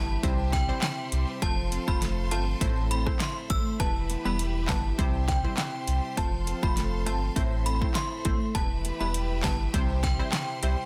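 Dancehall at 101 BPM with a hypnotic, sultry mood, cut from a longer piece, where a deep sub bass with octave and a punchy pop drum kit with fat snare, metallic hats, handclaps and rim clicks (entering at 0.2 s) sit up front beneath a fingerpicked flamenco guitar playing arpeggios through digital delay, bright detuned sawtooth chord stabs, a lush bowed string section with sidechain pumping, and an inharmonic FM synth chime melody coloured by ensemble chorus, phaser, tremolo and digital delay, all cycling through C, F, Am and Em in a dense, heavily limited mix with little reverb.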